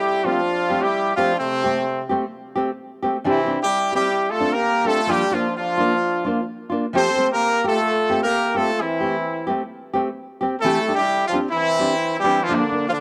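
A straight 4/4 pulse at 130 BPM drives this joyful, danceable highlife excerpt in F major, where a tight, up-front horn section, close-miked with light vibrato and octave doubling, carries the bright pop-style melody over a fingerpicked nylon-string guitar whose fresh strings, finger squeak and deep classical tone supply warm accompaniment in a lightly reverberant room.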